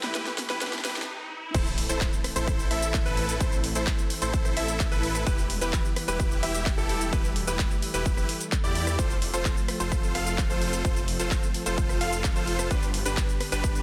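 Festival progressive house with an anthemic, euphoric lift, cut from a longer piece: a brief build-up of drum fill, background riser and a very quiet, boxy dark piano stops short, then at 1.5 s an up-front, overdriven, punchy electronic kick lands with an impact to launch the drop, where huge, bright supersaw chords carry the riff over a thick detuned saw bass, a warbling vintage pad and clear background piano arpeggios, all pumping under sidechain alongside a big-room drum kit with a huge snare, handclaps and crash, set in light reverb and a dense, heavily limited master over an Em, Am, Em, F, G progression.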